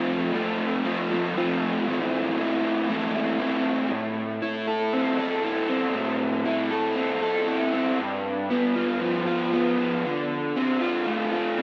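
Rock in a melancholic, brooding mood, this short cut from a longer piece features a lone raw garage electric guitar, overdriven, lo-fi and double-tracked with analog chorus, picked up front from G2 to A4 over F, Am, G7 and Dm7 chords, awash in a lush hall reverb that gives the mix a dreamy, soaked feel.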